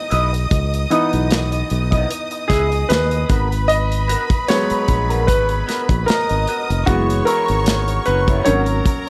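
A small room ambience frames this short cut from a lush 1970s-style soul piece, silky and bittersweet at 76 BPM in 4/4 with a gentle 16th-note swing, moving in C# dorian from C#m9 through G#m9 and F#7sus4 to G#9sus4. A clear, polished concert grand piano with deep bass takes the solo spotlight, carried by a growly, up-front fingered bass and a modern studio kit with a punchy kick, a medium-tuned snare and a rolled-off top. Underneath, a slightly broken-up electric guitar plays a wah-coloured riff through a small old amp, while a close, focused string section bows a lush, vibrato-laden second line.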